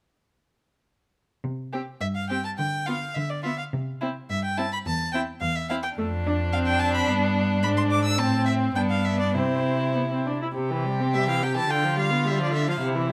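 Quick 2/4 phrasing with a rubato give opens this spirited, cheerful string quartet movement in a quick classical-period style, cut from a longer piece. The bowed cello enters at 1.4 seconds with a smooth, close bass line, joined by the second violin and the viola, both focused and set back, while the first violin carries the melody from 2.0 seconds, up front and even, with vibrato. Each single player sounds rich through close, detailed microphones and light reverb, and the opening phrase is restated at 10.6 seconds.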